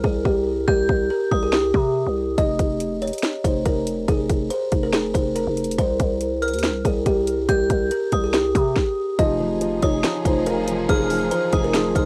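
Brooding and hard-hitting, this half-time trap hip hop cut from a longer piece sits on a cassette home recording with little reverb. A buzzing, woody kalimba carries the melody up front, its ringing plucks trailed by tape echo, while a growling 808-style bass and an overdriven trap kit with a hard-clipped kick, sharp snare and bright hats drive underneath. A metallic, inharmonic FM bell adds a high second line with chorus and tape echo, appearing briefly near the start and returning at 6.4 seconds. After a short stop, the closing section at 9.2 seconds brings in a felt-muted upright piano with audible action noise and a distant, lush string section with vibrato and portamento, both carrying cassette tape colour. The harmony moves from Cm through F5 and back to Cm before settling on Fm7 for that final stretch.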